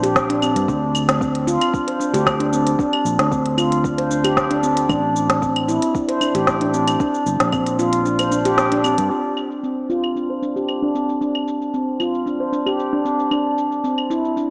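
A straight 4/4 pulse from an up-front organic electronic kit, with its woody snare, crisp filtered hats, cabasa and claves, and a soft electronic kick, carries this meditative organic downtempo fragment, where a ringing stainless-steel handpan plays mellow arpeggios through a low-pass filter and analog delay while a growly fretless electric bass with sidechain pumping sustains until 9.1 seconds, all in a dreamy mix drenched in plate reverb with a small-speaker sound.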